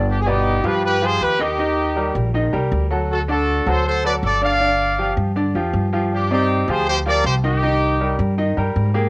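A tight, up-front trumpet section carries the melody in this driving, danceable salsa fragment, its brilliant pop-style tone touched by light vibrato and a cassette-tape coloring, entering at 0.1 s and dropping out at 8.2 s. Beneath it, a bright baby grand piano supplies the accompaniment with a natural, up-front sound that shares the same tape character. An acoustic upright bass, plucked pizzicato on gut strings, anchors the low end with a woody, thumpy feel and sits close to the listener. The harmony moves through G7, Eb, D, G5, G7sus4 and Cm7 in a straight 4/4 pulse, tuned slightly below standard pitch. A moderate small-room reverb and the home cassette recording give the brief passage an intimate, homespun atmosphere, as if it were cut from a longer performance.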